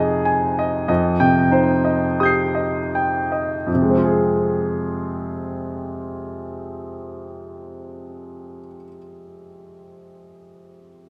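A clear concert grand piano, placed up front, carries this short classical passage alone from 0.0 to 11.1 s, its deep bass and long sustain giving the sound a natural, unforced body. The style is impressionist and the mood hazy and wistful, set in F minor at a very slow 37 to 51 BPM in 4/4 with a free, rubato feel. The opening phrase slows down through its first 3.7 seconds, moving from Fm7 to an Eb69/F colour before settling onto F minor as a second passage begins. The piano's range spans F2 to C7, reaching from low, resonant tones up to high upper notes. A moderate concert hall reverb lingers around the instrument, and the passage is cut from a longer piece.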